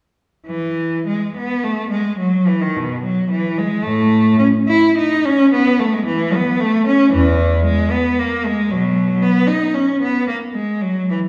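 A wet recital-hall reverb, lingering about 1.5 seconds, surrounds this short classical excerpt, heard from further back in the room. A single clear, smooth cello plays a flowing, dance-like baroque-style suite movement in 3/4, bowed with vibrato and even tone, ranging from E2 to E4 at around 101-117 BPM with a rubato feel. It begins in E major at 0.5 seconds, moves to B major at 7.1 seconds, and ends at 11.2 seconds.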